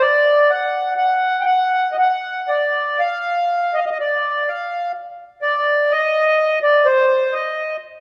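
A solo accordion, reedy and up front with a slow beating in its tone, plays a longing, haunting Celtic folk line in a rubato 3/4 at roughly 58-64 BPM, its vintage, band-limited sound carried on a moderate recital-hall reverb in this brief excerpt cut from a longer piece, ending at 7.8 seconds.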